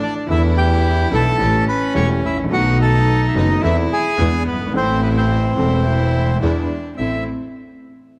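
A reedy, airy bandoneon carries the melody from the first moment, joined by a bowed cello with a gut-string, period-style tone on a close second line, in this playful, nostalgic tango in A minor at 107 BPM with a rubato feel. At 0.3 seconds a vintage, smooth grand piano adds accompaniment, a biting, earthy bowed double bass sits up front with light vibrato, and a lush symphonic string ensemble places focused stabs in the background. The whole passage, cut from a longer piece, sounds detailed and close within a moderate concert hall reverb, moving through E7sus4, A7 and B7 before settling on A minor as a new section begins at 7.0 seconds.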